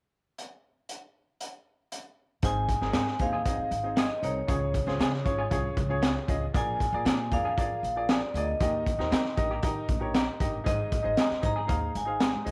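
Uptempo, joyful 1960s-style soul in Ab major at 117 BPM opens with a crunchy breakbeat drum kit up front, its high-tuned snare and tight kick playing alone until a clear, short-sustained upright piano and a thumpy pizzicato upright bass join at 2.4 seconds. A metallic vibraphone with slow motor vibrato carries the melody from just after, while a twangy, compressed clean electric guitar adds stabs through tape echo in the background. Very quiet, damped congas enter at 10.9 seconds, and light reverb sits on this uplifting section cut from a longer piece.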